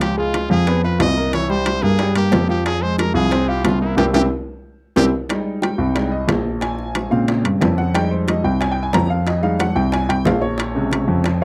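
Sultry and sophisticated, this Afro-Cuban jazz cut in F minor moves at 182 BPM in a straight 4/4, with a brilliant, punchy trumpet carrying the melody with light vibrato and scooped notes until 5.0 seconds. A bright, woody upright piano accompanies over a dark, mellow baby grand piano that holds the bass up front, while ringing metal-shell timbales sit close and dry and round, low-tuned bongos played with hard hands sound distant in the background. After a band accent and drum fill, the upright piano takes a polished solo from 5.3 seconds to the end, captured in a dry, close 1970s-style studio sound with light reverb.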